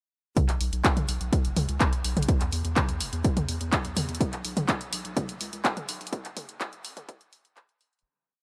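Melodic techno with a driving, dark mood builds across the whole piece. A punchy, tape-warm four-on-the-floor kick and an up-front analog drum machine with handclaps, hi-hats and toms drive it, over a round, nasal bass rolling in sixteenth notes with sidechain pumping, while a filter sweep runs throughout and a fade-out begins at 5.5 seconds within a high-pass-filtered digital ambience with lossy compression artefacts.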